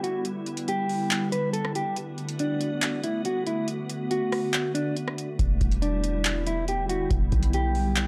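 A booming analog drum machine sits up front in this hazy, ethereal cloud-rap fragment, its deep kick, metallic hats, handclaps and rim click roughened by overdrive over a slow half-time feel. A dark, clean electric guitar carries the fingered melody, softened by a low-pass filter and trailed by tape echo. Beneath it, a glassy FM pad holds sustained chords with a slow attack and long release, shimmering through ensemble chorus and its own built-in reverb while sidechain pumping makes it breathe against the beat. The opening stretch plays as a break, and at 5.4 seconds a deep, boomy 808-style bass arrives, its sine tone striking fast and decaying. The overall sound is dry and gritty, with the feel of a hardware recording cut from a longer piece.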